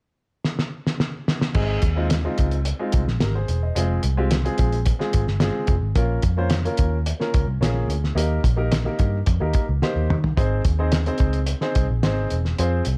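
Uptempo 1960s-style soul in Ab major at 109 BPM, this danceable, warm excerpt opens with a cloth-damped, thuddy drum kit whose fill from 0.5 to 1.6 seconds leads into the main groove, with a fat snare, tight kick and dark, muffled cymbals sounding gritty and up front. A baby grand piano with natural tone and short sustain enters at 1.5 seconds, and a round, punchy, foam-muted electric bass joins at 1.6 seconds, the two moving through Ab, Fm, Bbm and Eb before returning to Ab. A second drum fill arrives at 9.8 seconds, and studio reverb gives the whole a dark production.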